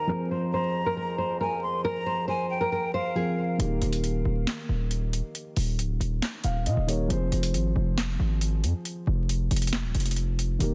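Menacing and hard-hitting, this half-time trap cut from a longer hip hop piece opens with a fingerpicked nylon-string guitar melody, complete with finger squeak, and an airy jazz flute line with vibrato, both carrying delay over a boxy, dark grand piano and a distant, mellow French horn section holding chords. At 3.6 seconds the guitar, flute and horns drop away as a saturated, aggressive 808-style bass arrives up front beside an overdriven trap kit of sharp snare, metallic hi-hats and handclaps, while the piano carries on to the close. Vinyl crackle and small room ambience colour a dense, heavily limited master.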